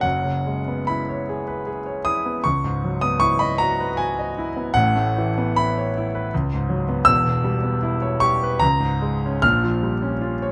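Classical impressionist solo piano, luminous and hazy, moving in triple metre with free rubato and uneven beats across this brief 10.5-second fragment of a longer piece. A clear grand piano carries everything alone, ranging from deep bass to the upper treble through shifting suspended and extended harmonies. Captured by close, detailed microphones with light reverb, the instrument sounds intimate, natural and up front, its audible action noise adding a tactile presence.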